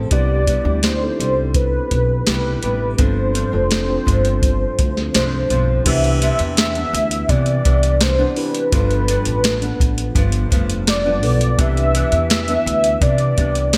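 A light reverb surrounds this laid-back, dreamy indie and bedroom pop piece in C major at 84 BPM, cut from a longer track, with a soft vintage rhythm box of deep kick, crisp snare and metallic hats sitting up front beside a woody pizzicato upright bass. A fingerpicked classical nylon-string guitar comes through lush chorus, warbly pitch drift and slapback echo, while a mellow tine electric piano sits in the background with a cassette-tape colour and its own slapback. Over them, a velvety, full-bodied synth lead with analog chorus and vibrato sustains the melody from 0.1 seconds, as the chords move from Cmaj7 through G7sus4, Cmaj9 and G7 back to Cmaj9.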